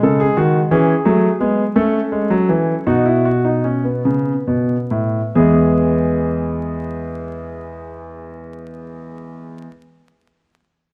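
Vinyl crackle sits beneath close, detailed microphones and a moderate recital-hall reverb, framing a warm concert grand piano that sounds open and up front, with deep bass. This lively, elegant baroque-style three-part fugue in E major moves in a straight 6/8 at 44-59 BPM on the dotted quarter, slowing down through the first 5.4 seconds as the harmony passes from G#5 through C#m/E, A and B. The solo piano, ranging from E2 to A4, resolves to E at 5.4 seconds and plays on until 9.7 seconds in this fragment cut from a longer piece.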